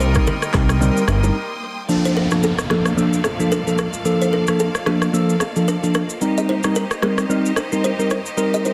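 A dense, heavily limited modern mix with light small-room reverb frames this mellow, smooth afrobeats excerpt in swung 4/4, moving from Cm7 to Bbmaj7 and back to Cm7. A fat, nasal analog bass, a tight vintage horn section with octave doubling, and ringing, close-miked bongos and congas open the piece and are gone by 1.6 seconds. Meanwhile an electronic drum kit with a deep kick, handclaps, rim click, shaker and softly clipped snare carries on beside lush bowed strings with vibrato and a woody kalimba riff echoed by digital delay in the background. A bell-like tine electric piano with phaser sits up front in the accompaniment from 0.2 seconds, and an electronic downlifter and swell arrives at 1.9 seconds after a brief break.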